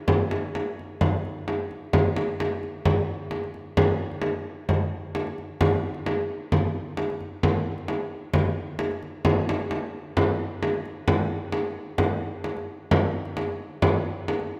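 A lush scoring-stage reverb with a two-second tail surrounds this short excerpt of Mongolian traditional music, giving it a proud, vast atmosphere. A single warm, acoustic frame drum sits up front in a live room, playing alone from 0.1 seconds to 14.5 seconds at a straight 131 BPM in 4/4. The piece moves into a new section at 2.9 seconds, and the drum carries it through to the end.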